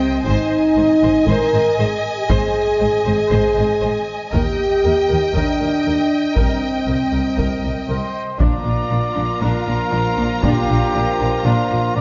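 Dark, distant French horns hold sustained chords at the heart of this brooding, epic orchestral film-score cue at 118 BPM, as a rich violin section carries the expressive, vibrato-laden melody over a focused second violin line, smooth background violas and cellos, and portamento-tinged double basses, while heavy-stick taiko drums enter close and dry at 0.3 seconds, a mellow solo trumpet adds up-front stabs from 7.9 seconds, and clear trombones join with sustained chords at 8.4 seconds, set in a wet scoring-stage reverb.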